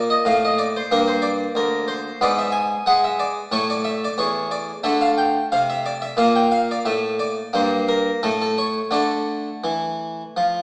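A baroque-style classical suite movement for solo harpsichord in D minor, this grave, introspective passage moves at 90 BPM in 4/4 with uneven, rubato beats, cut from a longer piece and running 10.6 seconds. The flemish-style harpsichord sounds plucked, full and brilliant with octave strings, close and up front, ranging from D2 to G#5 through harmonies such as Gm, G#m7b5 and Gm13 before a brief chordless moment at 8.2 seconds and a final Dm. Around it hangs a recital hall's reverberant tail, heard from further back in the room with a small-speaker quality.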